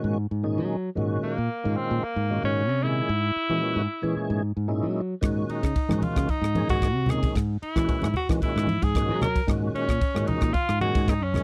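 A dry, close 1970s-style studio sound frames this funky, slick slice of electric jazz fusion at 113 BPM in 4/4, where a bright, forceful tenor saxophone with vintage vibrato carries the melody over a full, lightly overdriven tonewheel organ with slow rotary speaker and chorus vibrato and a direct, fingered electric bass, all moving over chords on an Ab bass such as Gbmaj9/Ab, Dbm6/Ab and Ab9sus4, until a crisp, polished drum kit with punchy kick, ride cymbal and rim click enters at 5.2 seconds and thick-skinned congas played with soft hands follow at 5.9 seconds.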